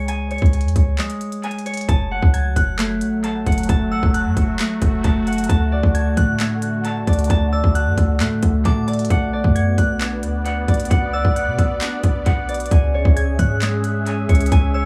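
A fingerpicked Celtic harp rings out bright and up front, its low-passed arpeggios trailing analog delay over a trap kit with a hard-clipped kick, crisp hats and claps and a deep, boomy 808 bass, while an airy, detuned sawtooth pad joins at 1.9 seconds and a crystalline FM bell follows at 2.3 seconds, both chorused, in this brooding, hard-hitting half-time hip hop excerpt set in an echo-heavy small room.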